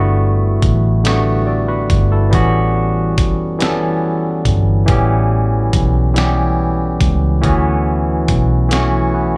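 Sensual and warm, this slow six-eight R&B fragment, cut from a longer piece, moves from Gmaj9 through A13 to Dmaj13, with a bright, barky tine electric piano up front, played clean through a combo amp with a slapback echo. A dark, round and punchy muted fingered electric bass anchors the low end from the start, and a dusty, gritty, compressed sampler-style drum kit of thumpy kick, medium-tuned snare and hi-hat joins at 0.6 s, sounding re-recorded in a small room. The whole performance comes across like a live gig heard through a club's PA, carrying the venue's reverb.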